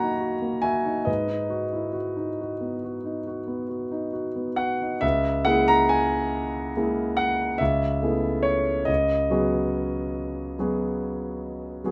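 Close, detailed microphones and little reverb place a warm concert grand piano up front, its deep bass rounding out a short passage cut from a longer piece. This is impressionist classical solo piano in 9/8 with free rubato, mysterious and hazy in mood as colored harmonies drift from F#6/9 through G#m7 toward C#m6. Around 5.0 seconds a second section begins, settling over a C# bass beneath Amaj9 and B6/9 chords through to the close at 11.9 seconds.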